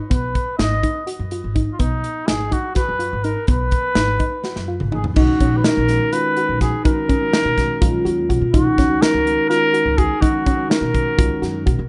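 A rough home-demo sound, with light small-room reverb and a dulled top end, frames this bright, intricate progressive band piece in 7/8, cut from a longer work. A soft, round synth pluck with chorus spins arpeggios beneath an up-front, mellow vintage trumpet melody trailed by delay, while woody pizzicato upright bass and a polished, airy studio drum kit carry the pulse, the kit's fill at 4.4 s leading into a new section. From 5.1 s a ringing soft-mallet vibraphone adds a second line and a clean tine electric piano sits in the background from 5.2 s, as the harmony moves from B to Bmaj7 and then D#m/B.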